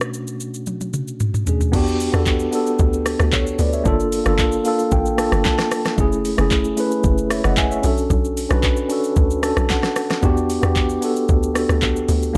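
A digital ambience surrounds this late-night, deep amapiano passage, cut from a longer piece and moving at 113 BPM in a straight 4/4 in E dorian. A mellow, clean tine electric piano sits up front as accompaniment, played through built-in speakers, and a filter sweep runs across it in the opening 1.7 seconds while a drum fill plays beneath. The electronic R&B drum kit is produced and tape-warm, with a knocking kick, fat snare, metallic hi-hats, handclaps, rim clicks, shaker, toms and a crash cymbal. At 1.7 seconds the drop arrives and a tight log drum bass enters: punchy and percussive, with an FM tone, a noise layer, a fast attack and a decaying tail. The electric piano adds short fills along the way over rich ninth chords that move from Em9 through Gm9 and F#m9 to Bm9 before returning to Em9.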